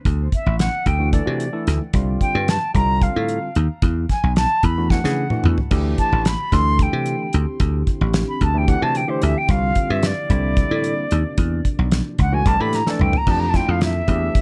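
Electric jazz fusion in a funky, slick 7/8 with a straight feel, this excerpt is led by a pure, vibrato-laden concert flute soloing up front over a punchy, foam-muted thumbed slap bass and a damped 70s drum kit with a fat snare, tight kick and drum fills around 4.9 and 12.9 seconds. A barky tine electric piano, bright and clean through a combo amp with lush chorus, comps on suspended and ninth chords. A deep, moody detuned pad enters very quietly at 6.4 seconds, all under light reverb in a dark production.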